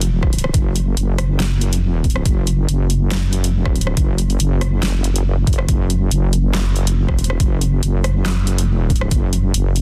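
A half-time groove at 140 BPM with a light swing on the sixteenths drives this dark, heavy deep dubstep excerpt, where an up-front, saturated wobble bass with a detuned sawtooth-and-sine tone and chorus sits on a low F#1 across the full 9.8 seconds, a muffled, pitched-down electronic kick thumps from 0.2 to 9.2 seconds, and a layered, overdriven deep house kit of handclaps, hi-hat, rim click and fat snare sits lower in the dense, heavily limited mix with digital ambience.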